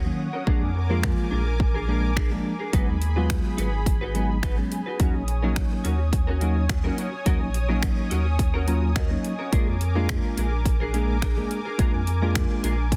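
Dense and heavily limited with little reverb, this short cut from a longer dance-pop track sounds tight, modern and up front. At 106 BPM in a straight 4/4 and in Eb minor, it has a driving, energetic mood, moving through Bb7, Abm7 and Ebm7 chords. A deep, round sine sub bass pumps with the sidechain beneath a punchy electronic pop kit that enters at 0.5 s with layered kick, bright hi-hats and finger snaps, the snare softly clipped. A bell-like tine electric piano, heard through its built-in speakers, supplies pumping accompaniment and plays a fill from 8.4 to 9.5 s, while a clean, twangy fingered electric guitar repeats a compressed riff under analog chorus. A lush, nasal sawtooth unison pad with detuned thickness and chorus holds sustained chords high above, also pumping, and a barely audible electronic downlifter passes in the opening half second.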